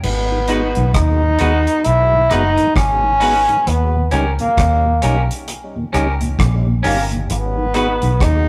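A brilliant, forceful trombone opens this short roots reggae excerpt, carrying the melody with light vibrato over a round, foam-muted electric bass that sits up front with tube saturation, and a dry, dark drum kit of tight kick, rim click, hi-hat and crash cymbal. The mood is serious and hypnotic, with a swung sixteenth-note feel and a harmony that moves from G#m7 to D#7 and back to G#m7 at 7.3 seconds. A mellow tonewheel organ enters at 0.3 seconds, lightly overdriven and treated with chorus vibrato, a slow rotary speaker and tape echo, sitting low in the mix. At 0.5 seconds a clean, twangy electric guitar joins, picked and compressed and bathed in spring reverb. The trombone sounds punchy yet distant, and the rough rehearsal-room recording places the band in a stone room with a moderate reverb.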